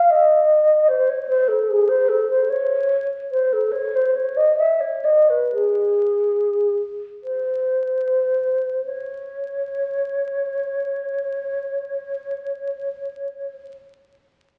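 Classical solo alto flute in a yearning, lonely mood, cut from a longer piece: one unaccompanied, up-front flute with a mellow, hollow, pure tone, tongued notes and vibrato moves freely in rubato 3/4 between 30 and 77 BPM, tuned to A4 = 435 Hz and ranging from G#4 to E#5; the opening phrase slows from 1.3 to 8.8 seconds before a contrasting passage begins, all heard through the reverb of a recital hall and the crackle and dulled top of a very old 78 rpm record.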